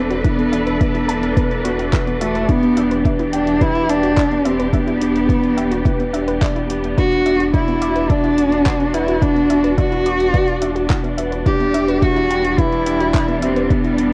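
A straight 4/4 groove comes from a punchy, up-front electronic kick and a layered deep house kit of handclaps and hi-hat, both with a cassette-tape colour. Above it, a dark, nasal cello sings an expressive melody with vibrato and portamento, over a soft, felt-muted upright piano riff with audible action noise, distant, lush symphonic strings holding sustained chords, and a round sine sub bass. A gentle, warbling pluck arpeggiates in the background through chorus, tape echo and cassette tape, pumping with sidechain alongside the strings and bass, while a spring reverb and small room ambience lend this melancholic, moving piano-and-strings electronica a homemade intimacy.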